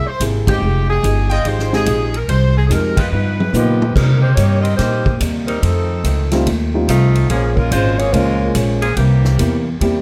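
A swinging, brassy big band piece in F minor opens with an edgy, tight saxophone section carrying the melody over a woody, up-front pizzicato upright bass and a boxy, picked old ladder-braced acoustic guitar tucked in the background. At 144 BPM with a 65% swing on the eighths, a natural-sounding drum kit with a fat snare and punchy kick joins almost at once, using hi-hat, ride, crash and toms in a big room. From 0.5 seconds a dark, mellow baby grand piano adds accompaniment while a distant, roomy trumpet section supplies stabs. Band accents punctuate the opening before the trumpets stop at 3.1 seconds, and a drum fill leads into the next section. The harmony runs from C7b13 and Fm9 through G7alt into Cm7, F7, Bbm7 and C7, with the piano returning at 6.3 seconds. Light reverb and close, detailed microphones keep the saxophones' light vibrato and smooth top clear in this cut from a longer piece.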